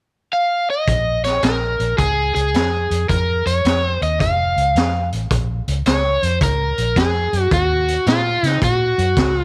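A small-room sound frames this mournful, soulful electric blues shuffle in Bb minor, cut from a longer piece and swinging at 108 BPM. A bright, overdriven, picked electric guitar sits up front carrying the melody from 0.3 seconds. At 0.9 seconds it is joined by a dark, round, foam-muted fingered bass and a raw garage drum kit with a high-tuned snare, boomy kick, hi-hat and a gritty, saturated, rolled-off top, as the chords move from Bbm7 to F and back to Bbm7 before reaching Ebm7.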